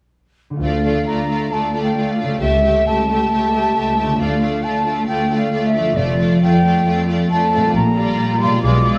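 Classical and dramatic, this urgent, fast romantic orchestral passage at 135 BPM in D minor moves with a rubato feel, as a ringing concert harp plays arpeggios in the background from 0.5 seconds before a lush string body enters at 0.6 seconds, with a distant violin melody over a second violin line, focused violas, expressive cellos and clear double basses, while an airy silver flute sits up front with a second line, all bathed in a wet recital hall reverb through a progression from Dm through A7/C# to Gm7/Bb in this excerpt cut from a longer piece.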